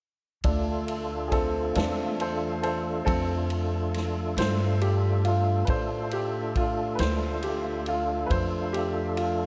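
A slow 12/8 blues pulse with a straight feel carries this smoky, mournful passage, cut from a longer piece. The bright upright piano takes a solo from 0.4 s to 9.5 s, its brilliant, polished, intimate tone carrying audible action noise. Beneath it, the tonewheel organ holds sustained chords up front, fat and lightly overdriven, with key click, chorus vibrato and a slow rotary speaker. The upright bass also sits up front, plucked on gut strings with a woody, thumpy, dark sound, while the swinging big-band drum kit supplies punchy kick, ride cymbal and medium-tuned snare in a natural big-room sound. A huge ambient reverb soaks the mix in a dreamy haze.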